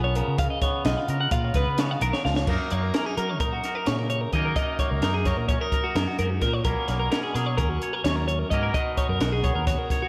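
A twangy electric guitar with a scooped, clean tone and a bright, compressed twelve-string electric guitar picking up-front arpeggios open this playful excerpt of math rock and midwest emo, both carrying slapback echo, alongside an amped fingered electric bass, all moving at 258 BPM in a straight 9/8 in F# major over C#7. A compact cocktail drum kit joins at 0.2 s with a dark, smooth, rolled-off sound, a high-tuned snare and punchy kick, and plays a fill from 2.1 to 2.5 s that leads into a new section shifting through F#6 and then Bmaj9 at 6.7 s. A moderate recital hall reverb gives the bright piece a big arena sound.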